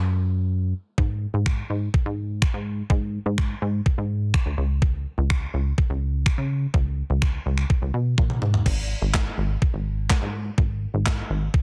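A punchy, funky analog bass opens this driving, bittersweet dance-pop excerpt at 125 BPM in straight 4/4, its sawtooth, square and triangle tones shaped by wave-folding and a fast-attack filter pluck that decays, all sitting up front with sidechain pumping. The bass plays alone during a short break at the start, ranging from G#1 to C#3, before a clean 12-bit digital drum machine enters at 1.0 seconds. The sampler-style kit brings a thumpy kick, a medium-tuned snare with soft clipping, handclaps, finger snaps, toms and crash cymbal, with a tape-warm character from being re-recorded in a large room. The drums also sit up front and play a brief fill from 8.2 to 8.7 seconds. The overall sound carries little reverb and a dense, heavily limited modern master, and the piece is cut from a longer track.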